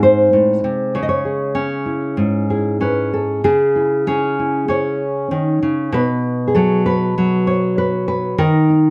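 Played rubato around 97 BPM in 4/4, this haunting, reflective fragment of solo fingerstyle folk in C# minor features a dark, full-bodied, thumb-plucked nylon-string guitar placed up front in moderate studio reverb, ranging from G#2 to D#5 as it moves from G# to C#m at 0.9 seconds, then through B5 at 5.9 seconds to D#5 at 8.4 seconds before the cut.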